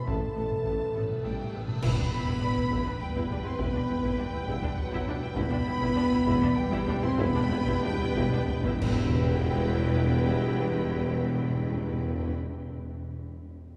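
Cinematic, epic orchestral film score in 3/4, relentless and grand, with a clear violin melody and a rich second violin line doubled by an airy silver flute, over mellow French horn and very quiet trombone chords, smooth violas, and a deep bass of cellos, double basses and tuba. A taiko ensemble struck with hard sticks drives the piece until 10.2 s, while bright clash cymbals with concert bass drum and close, dry timpani punctuate the accents at 1.8 s and 9.2 s, the timpani playing a fill as the music slows between 4.5 and 9.2 s. The harmony moves from Asus2 to E minor, all set in a cathedral-like reverb.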